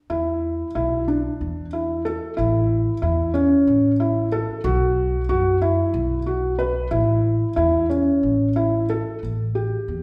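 Set in 7/8 at 185 beats per minute in eighths with a straight feel, this short passage of contemporary chamber music sits in A mixolydian and carries a hopeful, shimmering mood. A felt-muted upright piano spins arpeggios in the middle register throughout, its tone soft, mellow and intimate, with the audible clicks of its action giving it a vintage, close-up character. Beneath it, an upright bass holds the low end with plucked gut strings, sounding woody, dark and thumpy. Both instruments sit up front in the mix, yet a wet recital-hall reverb of about 1.5 seconds wraps them in the resonance of a church or concert hall. The harmony moves from E5 to A, then to B5, back to A, and settles on A5 at 9.2 seconds, as if caught mid-phrase from a longer piece.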